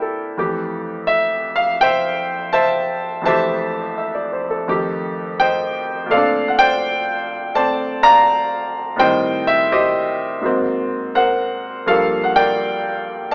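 A clear concert grand piano opens this relaxed, sophisticated solo jazz excerpt, sitting up front with an open tone and a deep bass that reaches down to F2 and climbs as high as Bb5. The tempo is an easy 84 BPM in 4/4, with eighth notes swung at 66%, and the piece is in F major, tuned slightly low to A4 = 438 Hz. The harmony moves from Fmaj9 to F9, then shifts at 6.1 seconds into a new passage through Bbmaj9, Am7b5, Ab9 and Gm9 before the clip ends at 13.3 seconds. A moderate studio reverb gives the piano a modest sense of room, while the overall recording carries an AM radio character that frames the playing in a vintage broadcast sound. Cut from a longer piece, it feels like a brief, unhurried glimpse of a solo set.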